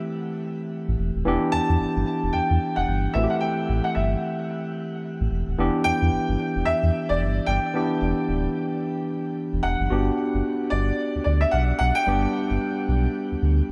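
A swung 4/4 groove at 111 BPM gives this bouncy, slick new jack swing R&B passage, cut from a longer piece, its lift, with a barky, bright tine electric piano laying down clean accompaniment through a combo amp and a deep, full sub bass with octave entering at 0.9 seconds. Over them a warm concert grand piano carries the melody in its upper register, touched with subtle chorus, tape echo and shimmer reverb, while the chords move between Am7 and Em7 before settling on Gmaj7 at 9.9 seconds. The whole mix is dreamy and soaked in plate reverb, yet the three parts stay up front.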